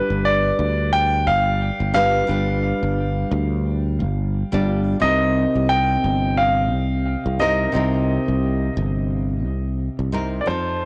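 A gently swung 4/4 groove with a lilting sixteenth-note feel sets up this relaxed, smooth piece of sunset chillout, cut from a longer piece. A concert grand piano carries the melody up front, with an intimate, polished tone, deep bass, long sustain and audible action noise, colored by tape echo. A fingerpicked nylon-string guitar provides accompaniment with a bright, fresh-stringed classical sound, occasional finger squeaks and its own tape echo. Beneath them, a sustaining fretless electric bass sits close and direct, its growly tone thickened by transformer saturation. The harmony moves from G7 to Cm7 at 5.0 seconds. The whole sits in a small room with light reverb and the character of cassette tape before fading out from 8.7 seconds.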